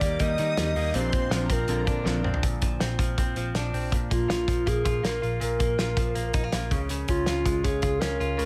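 A warbling, nostalgic lead with a soft attack, vibrato and chorus carries the melody through this breezy excerpt of jangly indie pop at 161 BPM in Bb mixolydian, over a bright, compressed clean electric guitar picking arpeggios through spring reverb, plate reverb and delay. A foam-muted, round picked bass plays alongside a loose acoustic drum kit that sits up front in a small room, with a fat snare and punchy kick, and the drums play a fill at 2.1 seconds. In the background, a dark, fingered electric guitar and an intimate, sul tasto chamber violin section add color until 2.4 and 2.3 seconds, as the chords move from Eb and Bbadd9 to Bb5 and Db.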